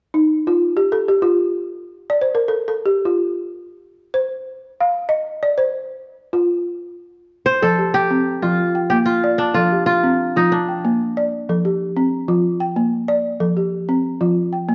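Flowing and joyful, this fragment of West African traditional string and xylophone music drifts in free time in F mixolydian, opening with a woody, round balafon playing arpeggios alone with soft rubber mallets until a crisp, ringing, fingerpicked kora melody joins up front at 7.5 s over chords alternating between F and Bb, before the kora falls away at 12.2 s, all heard through a recital-hall reverb and the worn, warbling pitch drift of old cassette tape.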